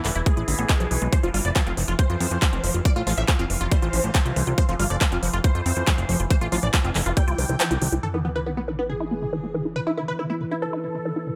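Psychedelic trance at 139 BPM in E phrygian dominant, this alien, hypnotic excerpt opens on a drop where a tight, overdriven electronic kick and a crisp big-room kit with handclaps and hi-hats drive a fat, detuned analog bass, while a woody wave-folded pluck riff, a punchy phased supersaw stab with 12-bit grit and tape echo, a resonant overtone-sweeping drone and a very quiet, moody ambient pad fill the space over chords moving from E5 to F5. The kick drops out at 7.6 seconds, and at 8.0 seconds the bass and drum kit stop as a sub drop impact hits and a filter sweep moves across the drone, leaving the pluck, stab, drone and pad to carry the passage to its close.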